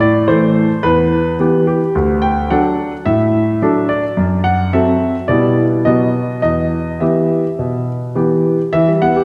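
A clear baby grand piano carries this brief solo fragment of a classical-period sonatina in E minor, cut from a longer piece and lasting about 9.2 seconds. The mood is dramatic and serious, moving at 108 BPM in a straight 4/4 that spans from D2 up to G5. The harmony travels from A minor through E minor and D to a half-diminished F# chord, then settles over B before resolving to E minor at 6.4 seconds. The instrument sits up front with an intimate, natural character, long sustain and audible action noise from the keys. A wet, reverberant space, like a church or concert hall, surrounds the piano with a 1.9-second decay.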